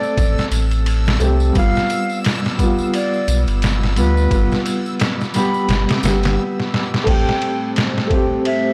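A bright, reedy wooden flute and a felt-muted upright piano open this hypnotic, cinematic trip hop excerpt in A minor at 87 BPM, with a swung 16th-note feel. The flute carries the melody with crisp attack and vibrato, coloured by tape echo, while the soft, intimate piano plays accompaniment up front with tremolo, tape echo and audible action noise. From the start, a distant tambourine sits in the background beside a reversed, swelling, granular texture. From 0.2 s a round sine sub bass with tube saturation and a compressed, pitched-down sampler-style drum kit arrive, the kit bringing a thumpy kick, medium-tuned snare, ride and crash under studio reverb. The harmony moves from Am7 to G7, then the groove stops at 6.4 s, with a drum fill from 6.6 s, before returning to Am7 at 7.1 s. There a moody, detuned analog pad with chorus and slow attack enters with sustained chords. The whole recording has a dry, gritty hardware character, with transformer saturation and vinyl crackle.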